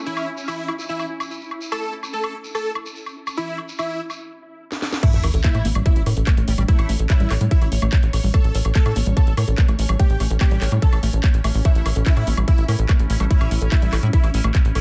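Psychedelic trance at 145 BPM in A major with an alien, hypnotic mood, cut from a longer piece, where a huge, compressed supersaw melody with phaser and dub echo floats over a pulsing gated chord texture, a grainy, distant shekere, a drum kit with cracking snare and metallic hats, and brief appearances of a background metallic wobble bass, before a drum fill at 4.7 seconds breaks into a drop at 5.0 seconds, where an up-front tight kick, a punchy sawtooth sequencer bass, a very quiet sub drop and a dark, woody wave-folded pluck riff with digital delay and sidechain pumping join the mix.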